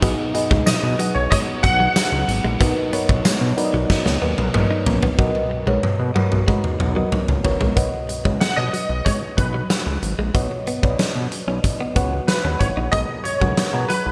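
1980s-style pop in B major at 93 BPM, this short cut from a longer piece feels romantic and uplifting, set in a moderate lush hall reverb with a bright digital sheen. A huge arena drum kit sits up front with a punchy kick, fat snare, hi-hat, tambourine and toms drenched in gated reverb, rolling through drum fills from 3.9 s to 7.8 s. A thick, detuned analog bass with a filter sweep anchors the low end, while a mellow FM electric piano, treated with chorus and phaser, supplies soft, round chords moving from B6 through Bmaj7 and Badd9 to G#madd9. In the background, a clean direct-recorded electric guitar picks a compressed riff bathed in lush chorus and delay, and a double-tracked overdriven guitar adds bright accompaniment until 5.7 s. A clear concert grand piano carries the melody up front, an intimate voice with audible action noise and long sustain, heard briefly near the start and returning at 8.4 s with ensemble chorus and delay.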